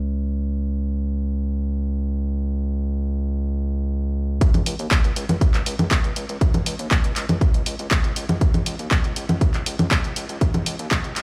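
A steady, straight 4/4 pulse at 120 BPM drives this hypnotic, dramatic melodic techno fragment, where a gritty, aggressive synth bass with tube saturation and sidechain pumping opens alone in a low C#2 to D#2 range before a punchy electronic kick and a tape-tinged house kit of congas, handclaps and hi-hat arrive up front at 4.4 seconds for a build-up with a filter sweep, all in a dry mix heard through a big sound system in a bare stone room.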